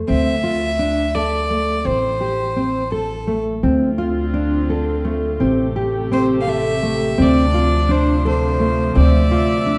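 A dark, roomy recital-hall sound frames this restless, hypnotic contemporary instrumental in D minor, cut from a longer piece and moving in 5/8 at 169 BPM, where full-bodied fingerpicked nylon-string guitar arpeggios and a woody pizzicato upright bass sit up front beneath a clear, biting bowed violin melody that rests at 3.4 seconds and returns at 6.1, while a soft, floating string section playing sul tasto drifts in from a distance at 3.6 seconds with sustained chords over a Dm7 and Am7 sway that closes on Dm9.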